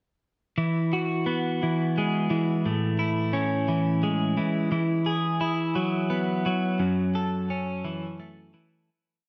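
Euphoric and cinematic, this short post-rock piece in 6/8 features a lone clean, compressed twelve-string electric guitar picking arpeggios up front with delay, moving from Eadd9 through Amaj7 and back before settling on F#m7 as it fades out from 6.8 seconds, all within a dreamy mix soaked in plate reverb.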